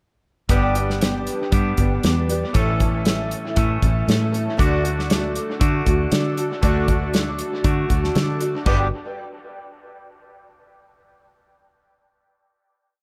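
Folk rock and heartland rock at 118 BPM in G lydian with a nostalgic, open-road mood, this short piece moves through a verse over G, A and D before landing on a final G chord at 8.7 seconds, carried by a shimmering, octave-doubled twelve-string acoustic guitar playing folk strumming in open chord shapes through ensemble chorus and dub echo, a bright, twangy electric guitar riff of ringing chords, a round, foam-muted fingered electric bass with a dotted figure, and a punchy, up-front country drum kit with dark cymbals and its own dub echo, all in a dry, echo-heavy mix.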